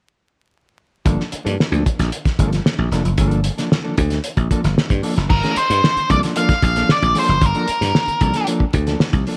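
A dark, picked octave-fuzz lead guitar takes the melody up front from 5.3 seconds in this hypnotic, driving 113 BPM funk excerpt in G minor, over a growly, bright thumbed slap bass, a muffled, cloth-damped drum kit with a fat snare and tight kick, and a clean, fingered mellow electric guitar on Gm9 harmony, all set in light small-room reverb with vinyl crackle.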